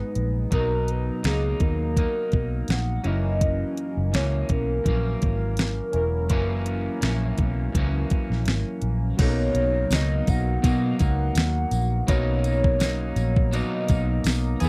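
Indie bedroom pop at 83 BPM in B major with a hazy, nostalgic feel, cut from a longer piece, where a hollow, woody clarinet-like synth lead carries the melody over a twangy electric guitar at the edge of break-up, warbling lo-fi synth keys with chorus and phaser in the background, a round, punchy foam-muted bass, and an up-front pop drum kit with a knocking kick, deep snare and overdrive, while a jingly tambourine joins at 9.9 seconds in a dry, close 1970s-style studio sound.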